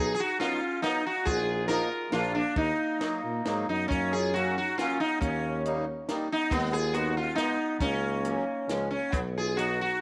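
Alpine folk in a festive, bouncy waltz-time dance-band style, with a rubato feel. This excerpt shifts into a new section at 3.9 s. A buzzing, shimmering sitar carries the melody up front with a slapback echo, while a bright, vintage clarinet adds a second line in the background and a distant, roomy tuba with light vibrato and transformer saturation holds down the bass. From 0.4 s, a reedy, airy accordion with light tremolo tuning fills in the accompaniment, and a dry compact cocktail drum kit plays hi-hat, ride, a tight kick and a high-tuned snare, all set in a light studio reverb.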